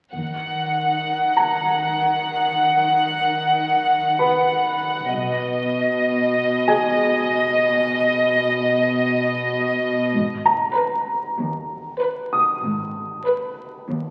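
In a straight four-four pulse, this eerie, uneasy cinematic fragment sets a rich, up-front violin section on a soft-attacked, lightly vibrato sul tasto melody over an intimate cello section with a warm tone, while a dark, woody double bass section surfaces intermittently in the background and a bright, worn grand piano adds brilliant short-sustained texture from 1.4 seconds, the whole cue bathed in wet scoring-stage reverb and the crackle of a very old 78 rpm record.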